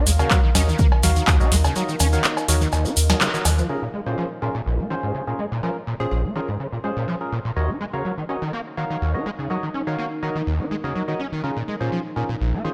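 Trippy and hypnotic, this acid house excerpt opens on a drop where a punchy electronic kick, a booming, tape-tinged analog drum machine with metallic hats and a tonal snare, a grainy cabasa and a round, deep analog bass play together until the kick falls away at 1.8 seconds; the drum machine, cabasa and round bass then stop by 3.7 seconds, while a squelchy, gritty acid bass riff, hollow, nasal organ stabs with chorus and delay, and a moody pad in the background carry on, with a brief bright, phased unison lead flickering in at 6.0 seconds, all bathed in lush hall reverb.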